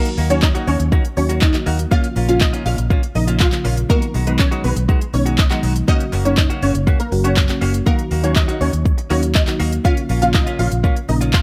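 Confident and driving, this dance-pop excerpt moves at 121 BPM in a straight 4/4, set in Eb minor and cycling through Ebm, Bbm, B6 and Gb. A detuned unison pluck carries the melody with a punchy sawtooth edge, a noise layer and a moving notch, its tape echo and ensemble chorus breathing with sidechain pumping. Beneath it, a soft, round pluck built from wave-folded triangle and sine tones supplies a dark, decaying accompaniment, while a direct-recorded clean electric guitar picks a compressed riff bathed in lush chorus. The deep house kit sits up front with a deep kick, smooth hats, handclaps and shaker, joined at 0.2 seconds by a vintage foam-muted fingered bass that is round, amped and pumping. A very quiet group handclap, crisp and saturated, slips in at 0.4 seconds, and the whole mix stays dry and gritty with little reverb, as if captured on hardware.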